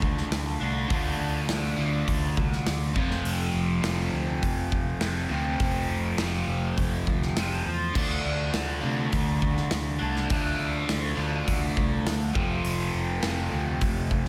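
A bright, double-tracked cranked stack guitar with overdrive and phaser drives this aggressive, heavy hard rock excerpt in D minor at 102 BPM, riffing over Dm and F alongside a hollow-bodied overdriven semi-hollow guitar with slapback echo, a growly, punchy picked electric bass and an up-front big rock drum kit of crash, hi-hat, punchy kick and medium-tuned snare, all set in a lush hall reverb for a big arena sound.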